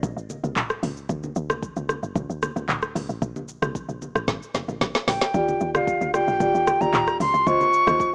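Soulful and relaxed, this short amapiano cut rides on a punchy, percussive log drum bass, an up-front electronic afro-pop drum kit with a deep kick and metallic hats, and bright congas tucked in the background, until a drum fill at 4.3 seconds ushers in an airy, vibrato-laden concert flute with tape echo at 5.1 seconds and round, close-miked marimba stabs at 5.3 seconds, all in a rough home-demo mix with light small-room reverb.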